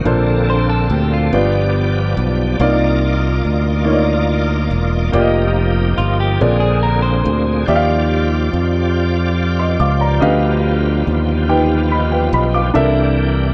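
Hopeful and soulful, this slow gospel fragment in Bb major moves at 47 BPM in a straight 6/8, with a natural-sounding baby grand piano carrying the accompaniment through rich chords such as Bbmaj9, Cm11 and Ebmaj9. A full, shouting tonewheel organ holds sustained chords through a fast rotary speaker with light overdrive and chorus vibrato, while a punchy, up-front fingered electric bass anchors the low end. A clean, compressed electric guitar with spring reverb adds a picked second line in brief spots from 0.5 to 1.5 seconds and again from 6.0 to 7.6 seconds, all set in a light reverb.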